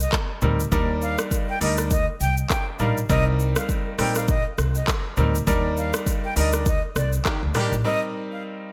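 A breathy jazz flute leads this sultry, smooth afrobeats excerpt in C minor at 101 BPM from the first moment, alongside bass and drums, its close-miked, vibrato-touched tone carrying the melody over a swung 4/4 groove that rests on a Cm7 chord. Beneath it, a pizzicato upright bass with gut strings adds a woody, thumpy low end, while an electronic afro-pop drum kit sits up front with a deep kick, smooth hats, handclaps, rim clicks, shaker and toms, all bathed in gated reverb. A brilliant, polished grand piano joins at 0.4 seconds with accompaniment that stays present in the mix. From 5.5 seconds the band hits a shared accent, and a horn section with light vibrato and a smooth top slips in briefly as a second line near 7.3 seconds. The production has a bright 1980s-style digital sheen and light small-room ambience, with the piano ringing on until 8.7 seconds as the fragment cuts off.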